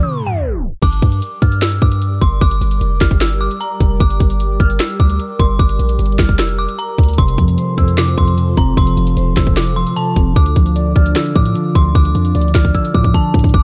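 This trap hip hop excerpt moves at 151 BPM in a half-time feel in G dorian, hard-hitting and menacing with a dark production and a digital ambience. It opens with a brief break in which a tape stop and a reverse cymbal in the background lead into the full groove at 0.8 seconds, where the trap drum kit enters up front with a hard-clipped kick, sharp snare, metallic hats, finger snaps and crash cymbal, closing with a drum fill. Underneath, a deep, boomy 808-style bass with a sine tone, a noise layer, a fast attack and decaying notes holds the low end throughout. An eerie, inharmonic synth bell carries the melody high up, its detuned FM tone treated with chorus and a digital delay, while a glassy, ethereal FM pad with slow attack and ensemble chorus sustains chords in its own reverb from 1.2 seconds. A clean, dark, fingered electric guitar supplies accompaniment, heard briefly at the start and returning at 7.2 seconds as the harmony moves from Gm to F and then Dm.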